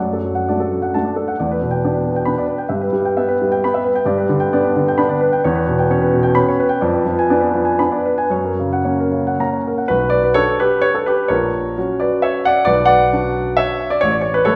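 A solo grand piano opens this brief cut from a longer classical piece, a romantic triple-time dance in 3/4 with dotted rhythms and a nostalgic, wistful mood. The tempo moves freely with rubato, somewhere between 107 and 141 BPM, and the playing spans A1 to B5. The piano has a warm tone and sits up front, yet a wet recital-hall reverb places the listener further back in the room, giving each phrase a lingering halo. The harmony begins on D/F# and passes through Em7 before settling into B minor from 4.1 s. It then darkens through C#m7b5/E and Fdim7 to an F# chord. A new section arrives at 9.9 s, alternating Bm and F#/A# before closing on F#m/A as the excerpt ends at 14.6 s.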